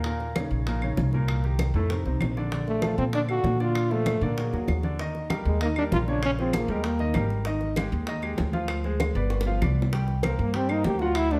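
A brisk, danceable straight-four Afro-Cuban jazz groove is set by tight, high-tuned bongos played with hard hands, very quiet, thick-skinned low congas and woody claves in the background, with a dark, thumpy pizzicato upright bass up front and a smooth vintage baby grand piano comping chords. At 2.7 seconds a warm, present trombone takes the solo melody with vibrato, soft attacks and scooped notes, stepping out at 7.3 seconds and returning at 10.4 seconds after a drum fill. The sophisticated feel sits in a moderate large studio reverb, and this cut is lifted from a longer piece.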